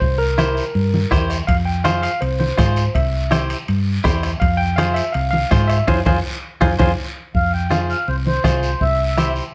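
A barky, bright tine electric piano takes the solo over the first 7.3 seconds of this passionate, driving cumbia excerpt at 164 BPM in F harmonic minor, set over a round, dark hollow-body bass played up front, a soft-beater bombo, raspy distant guiro, thick-skinned low-tuned congas in the background, ringing metal-shell timbales and a twangy, compressed clean guitar picking out the accompaniment through chords moving between C7, Fm and C. After a band accent and drum fill close that opening, a reedy, mellow accordion with plate reverb carries the melody from 7.4 seconds, all within a light reverb.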